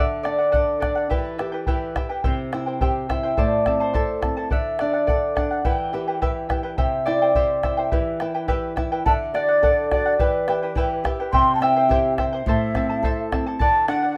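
Melancholic yet festive, this Andean folk piece in E minor moves at 106 BPM in a straight 2/4, cycling through D, E minor, C and A minor as a ringing, fingerpicked Celtic harp carries the melody over a shimmering, double-strung charango and a small, fresh-stringed nylon-string guitar. A deep, dark bombo sits close, dry and up front from 0.3 seconds, and at 9.1 seconds, as the section repeats, a breathy, mellow large quena enters with a second line, its soft attack, vibrato and rolled-off highs adding a wooden voice. The ensemble plays in a moderate small room, and the passage is cut from a longer piece.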